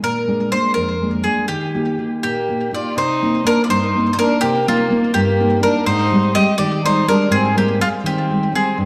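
A bright, picked bowl-back mandolin carries the melody up front with a touch of tape echo, while a full-bodied, fingerpicked nylon-string guitar plays the accompaniment in a lively, sunny Italian folk serenade that moves in a rubato 6/8. At 2.2 seconds a single bowed violin enters on a quieter second line, its clear, nasal, biting tone carrying vibrato and a smooth top. The short excerpt sits in a wet recital-hall reverb with a dark, warm production.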